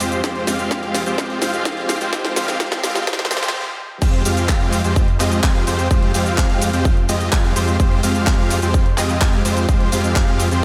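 Dreamy and soaked in a lush hall reverb, this brief festival progressive house excerpt in F minor at 127 BPM feels powerful and euphoric, opening on an Fmadd9 chord with a huge, thick supersaw riff pumping against the sidechain through analog delay. Beneath it, a detuned sawtooth bass with chorus holds F2, while a punchy, up-front electronic kick and a tape-flavoured house kit with a cracking snare, handclaps, hi-hat, shaker and crash drive a drum fill through the build-up. A brief stop at 3.5 seconds precedes the drop, which lands at 4.0 seconds.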